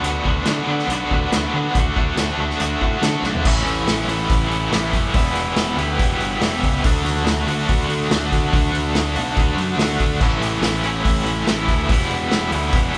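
A driving, straight 4/4 pulse at 142 BPM powers this swaggering classic rock excerpt, cut from a longer piece and played by a band together in one room with light reverb. A bright, overdriven electric guitar, double-tracked and up front, carries the riff from E2 to F#4 with a tremolo effect, moving through chords from Bm/D and D into A, Em and D. Underneath, a growling picked electric bass, heard direct and amped with its own overdrive, anchors the low end between E1 and D3. The vintage acoustic drum kit has a pumping small-room sound, with dark cymbals, a medium-tuned snare, a punchy kick, toms and a rolled-off top. A drum fill at 3.2 seconds leads the band out of the opening passage into the longer section that begins at 3.5 seconds and runs to the end.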